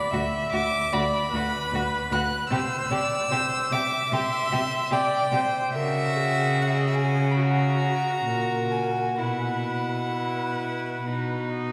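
Rubato phrasing in 4/4 carries this elegiac, yearning slow romantic movement for string quartet, cut from a longer piece: an up-front violin sings the high melody with a pure, floating sul tasto tone; a dark, intimate viola with light vibrato and airy bow gives close accompaniment; a clear second violin traces a distant line beneath; and a rich cello anchors the bass. All four bowed players are softly attacked and bloom in a long, wet church reverb as the harmony moves from Bm/D through C and F#7/C# to Bsus4, settling on B at 11.1 seconds.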